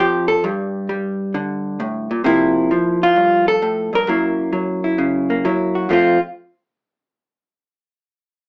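Recorded live in a modest studio room with a moderate ambience and a small-speaker character, this brief cut from a longer solo jazz performance swings in 4/4 at 132 BPM in F major, with a sophisticated lilt. A vintage hollow-body electric jazz guitar plays alone and up front, its dark, clean, picked tone compressed as it moves from G5 through C7sus4 and Gb7 before settling on F at 5.9 seconds. The guitar plays until 6.2 seconds.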